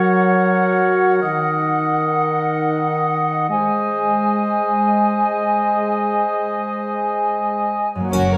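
Cinematic heroic adventure score in free time, soaring and cut from a longer piece, in which a bright flute group, a roomy oboe and a clear, distant clarinet carry second lines over mellow, up-front French horn chords through a build-up moving from Gb to Ebm to Ab, until a ringing harp enters at 8.0 seconds and, at 8.1 seconds, lush violas, close cellos, intense double basses, a dry triangle and violins playing both a background melody and a focused second line arrive in a wet scoring-stage space.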